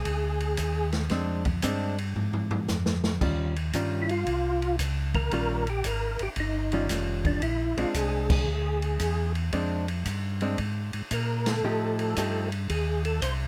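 Soul jazz organ trio music with a greasy, swinging mood, this short cut from a longer piece moves in a 4/4 swing. A percussive tonewheel organ carries the melody with a round, third-harmonic bite, its tone colored by chorus vibrato and a slow rotary speaker. A second, mellow organ voice handles the bass line down low, dark and clean and placed up front, also turning through a slow rotary speaker with chorus vibrato. An acoustic jazz kit with dark cymbals, a medium-tuned snare and a boomy kick sounds natural in a small room and adds a fill from 2.2 to 3.2 seconds. A compressed, picked hollow-body electric guitar enters at 1.1 seconds to comp over ninth chords, and the full band hits accents at 8.2 and 11.4 seconds. The sound is dry and close-miked, with a detailed, intimate presence.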